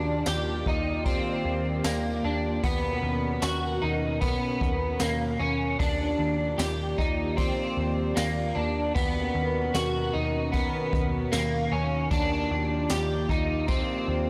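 A straight 4/4 pulse at 76 BPM carries this dream pop passage, cut from a longer piece, with an ethereal, blissful mood in Eb major. A jazz kit played with brushes enters at 0.3 seconds, its boomy kick, high-tuned snare, dark ride cymbal and tambourine set in a studio room. A round, foam-muted picked electric bass holds Eb2 with tube saturation, while an up-front electric guitar at the edge of break-up picks arpeggios through ensemble chorus, analog delay and shimmer reverb. Alongside them, a warbly, nostalgic lo-fi pad of detuned sawtooth, triangle and sine tones with a sub octave sustains slow-attack chords, bathed in chorus, built-in reverb and shimmer reverb. The harmony sways between Ebmaj9 and Bmaj9, and the recording has a dry, gritty hardware character with light studio reverb.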